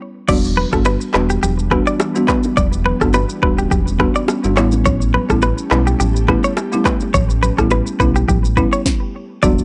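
Sultry and smooth, this afrobeats excerpt at 105 BPM in E dorian, with a light sixteenth-note swing, rides a deep sine sub bass and a produced electronic kit with a deep kick, sharp snare, handclaps, rim clicks, shaker and crash, as a woody, rustic marimba and a bright, twangy direct-recorded clean guitar riff with analog delay play over Em7 and A7, an ethereal detuned pad with ensemble chorus enters at 1.6 seconds in the background beside close, hard-handed congas and bongos, and the full band stops from 8.9 seconds in a dry, gritty hardware sound.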